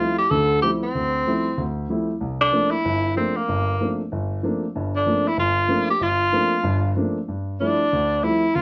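Searching and spiritual in feel, this short jazz excerpt swings at a brisk pace in four. A tenor saxophone carries the melody up front, its tone warm and vintage with vibrato, playing in a solo jazz style within a compact middle register. Beneath it, a grand piano supplies accompaniment from the low bass up through the middle of the keyboard, its sound smooth and aged, also sitting close to the listener. The harmony rests on suspended thirteenth chords, moving from G13sus4 to C13sus4 at 2.2 seconds and returning to G13sus4 at 7.3 seconds, which gives the passage an open, unresolved quality. A moderate studio reverb adds a modest sense of room around both instruments, and the slight detuning below standard pitch lends the recording an old-fashioned character.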